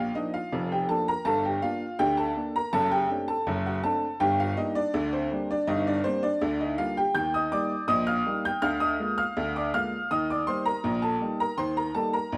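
A solo upright piano carries this playful, jaunty ragtime excerpt at 81 BPM in a straight 2/4, its worn, woody, boxy, slightly detuned tone sitting up front with long sustain and tuned to A4 = 445 Hz. The harmony moves from Bb through Gm and D7/F# before turning toward Eb and Bb7/D. A moderate stone-room reverb gives the live, single-room performance a lived-in air, and the passage is cut from a longer piece.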